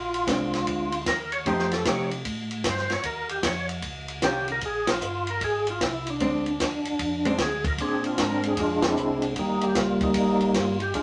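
A percussive tonewheel organ carries the melody up front, its fat, lightly overdriven voice marked by key click and second-harmonic percussion, turning through a slow rotary speaker with chorus vibrato. This is a greasy, soulful soul jazz organ trio excerpt in Bb mixolydian, swinging in 4/4 at 152 BPM. Underneath, a second tonewheel organ handles the bass line with a round, mellow, clean tone, also given chorus vibrato and slow rotary. A compact cocktail drum kit sits close and dry, with a punchy kick, high-tuned snare, hi-hat and dark ride cymbal, while a hollow-body jazz guitar adds picked, compressed accompaniment until about 7.4 seconds. The changes move through Bb9, F9 and Eb9 chords, the band hits accents at 4.8 and 8.8 seconds, and a short, wet club reverb gives the whole a close-quarters feel.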